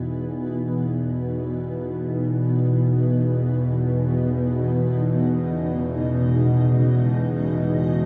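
Soaked in a huge, lingering ambient reverb, this short dark ambient drone excerpt feels dark and unsettling, floating in free time. Up front, a tense, string-like bowed drone with a wave-folded edge and vibrato sits low throughout, shaped by a filter sweep. Behind it, a quieter, blurred granular cloud pad holds sustained chords, shifting from E5 to C#5 at 4.7 seconds.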